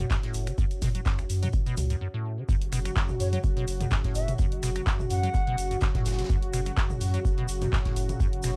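A dry, gritty cassette-tape sound with little reverb carries this trippy, driving acid house cut in F# minor at 126 BPM with swung 16ths, led by a squelchy, resonant square-wave acid bass riff with filter sweep over a round sine sub bass that pumps to the sidechain. A deep, tape-warm electronic kick sits up front beside a punchy analog drum machine of finger snaps, handclaps, hi-hat and toms, while a very quiet tight funk kit of hi-hat and high-tuned snare and a grainy, distant tube shaker stay in the background. A nostalgic lo-fi pad opens the piece before a short break, then the drop at 2.5 seconds brings a smooth, detuned sawtooth pad of sustained chords, and a mellow, hollow silver flute melody with vibrato and analog delay appears from 3.2 to 5.8 seconds.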